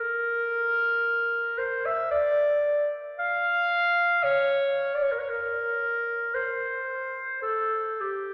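A warm, distant solo clarinet sits up front in this brief, serene and nostalgic classical fragment, cut from a longer piece, its free, rubato phrasing moving between G4 and F5 for 8.3 seconds within the long, wet reverb of a church.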